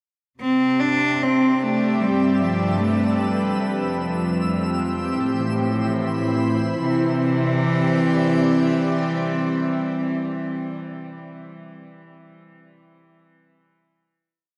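In a straight 4/4 at 75 BPM, this luminous ambient piece in C major places a rich, reedy, period-style cello melody of arching motifs up front with tape echo, over a pure, organ-like pad of slowly shifting chords with ensemble chorus, a soft sul tasto cello section holding the bass, a nasal, tense bowed-like drone in the background, a twinkling granular texture fading in on a held high note until 6.8 s, and a mellow, very quiet concert harp whose fingerpicked arpeggios enter at 4.8 s, set in an echo-heavy mix with plate reverb before settling on a final Cadd9 chord.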